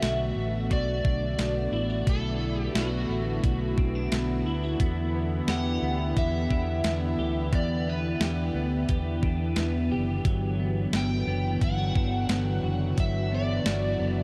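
A straight 4/4 pulse at 88 BPM from a crisp, thumpy, overdriven 8-bit drum machine playing kick, snare and hi-hat drives this hazy, melancholic dream pop excerpt in E minor, where a round, punchy fingered electric bass sits up front, a bright, twangy clean electric guitar plays arpeggios through ensemble chorus and diffuse delay, a smooth, detuned sawtooth pad sustains Bm7 and Em7 chords with shimmer reverb, and an overdriven slide guitar carries the melody through analog chorus and delay, the whole dreamy mix soaked in a huge ambient reverb until the drums stop at 13.8 seconds.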